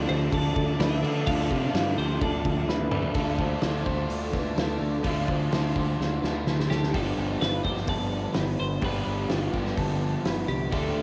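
A light reverb and a home cassette recording frame this wistful, dreamy shoegaze and dream pop excerpt, moving at 127 BPM in a straight 4/4 in G mixolydian over Dm, Dm7 and G7 chords. A roomy, distant indie drum kit with dark cymbals, a fat snare and a tight kick sits up front, adding fills along the way. Beneath it, a growling fingered electric bass with overdrive gives a bright low end, while two overdriven semi-hollow guitars carry the riff. One is tucked into the background with lush chorus, and the other, more forward, blooms through reverse reverb. A lo-fi, slightly broken-up electric guitar through a small old amp plays compressed arpeggios soaked in ensemble chorus and tape echo. A clean, twangy twelve-string electric guitar sings the melody with lush chorus and tape echo, pausing at 2.9 seconds and returning at 6.7 seconds. Meanwhile, a very quiet, silky analog string pad with detuned sawtooth tone and vibrato holds sustained chords until 6.9 seconds.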